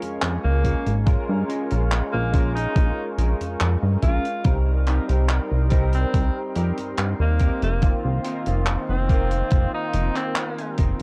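Dark cassette-tape haze wraps this woozy vaporwave excerpt at 71 BPM in Bb dorian, where an up-front, tape-warm electronic kick and a glossy, tube-saturated synth bass anchor a crisp fusion kit of handclaps and hi-hat in a pumping small room, while a barky tine electric piano with ensemble chorus and analog delay moves through Bbm7, Cm7 and F7sus4 under a very quiet, warbling detuned pad, a background semi-hollow guitar riff roughened by 12-bit sampler grit, and a clear alto saxophone melody with light vibrato, scooped notes and tape echo that enters at 0.4 seconds, before a clean guitar fill arrives at 9.5 seconds.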